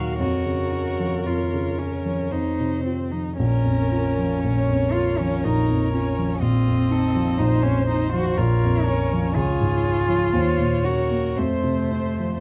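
Solemn and yearning, this slow romantic movement for piano quartet unfolds in a flexible, rubato triple metre, cut from a longer piece. A clear, focused violin carries the melody with vibrato, sounding close, while a rich second violin adds a smooth-topped line alongside it. A rich, even cello sits up front with its own bowed second line. The dark, mellow grand piano has a short sustain and provides the accompaniment, and it is the loudest voice in the mix. All four play together through the full 12.4 seconds, with the harmony circling Bb minor and F before moving through Db and Ebm7 and settling on F near 11.4 seconds. A moderate large-studio reverb surrounds the ensemble, and the production is tilted toward a soft, rounded sound, with the upper highs rolled off above 7.8 kHz.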